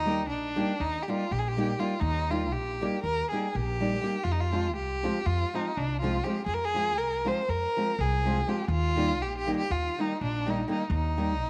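Virtuosic and wild, this excerpt of Balkan folk has the spirit of a wedding band, moving at 243 BPM in eighths through a straight 9/8 in Eb major. A bowed violin carries the melody up front, close and expressive, with vibrato, portamento and a soft attack giving its line a singing, tender edge. Beneath it, a pizzicato upright bass with steel strings sits equally forward, its tone woody and warm. A small, fingerpicked nylon-string guitar fills in the accompaniment from 0.1 s, acoustic and warm in the mix. The harmony moves from Eb to Fm at 4.2 s and returns to Eb at 8.7 s, all wrapped in a light small-room reverb.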